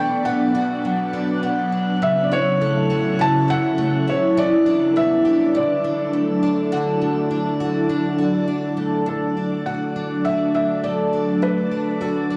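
From the first moment, a soft, intimate felt-muted upright piano sings a melody touched with tape echo over an airy, detuned pad of sustained chords and the woody, shimmering arpeggios of a picked, plugged-in twelve-string acoustic guitar with analog chorus and tape echo. This dreamy, blissful dream pop fragment in D major at 102 BPM moves through Bm, A6/C#, Em7 and Dadd9 before settling on D at 9.1 seconds, held in a moderate shimmer reverb and a dry, gritty studio sound.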